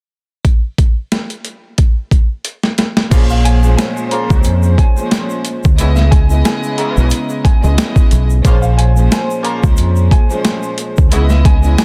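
A gritty, dark boom-bap hip-hop groove at 90 BPM in 4/4 with a light 16th-note swing, this Bb minor excerpt opens with the sampler-style drum kit alone, its thumpy kick, medium-tuned snare, hi-hat and crash overdriven and compressed up front, with a drum fill from 2.5 to 3.1 seconds. At 3.1 seconds the fuller band arrives: a deep, round, punchy fingered electric bass sits up front beside the drums, while a dark studio string section bows a soft-attack sul tasto accompaniment with a floating, cassette-tinged tone. A clear horn section adds stabs in octave doubling with light vibrato, sitting distant and roomy in the background with digital delay, and a grainy egg shaker ticks quietly underneath. From 3.3 seconds a mellow, clean electric guitar carries the fingered melody high in its register, colored by spring reverb and delay. The harmony alternates between Bbm7 and Dbm7, and the whole mix is dense, heavily limited and fairly dry.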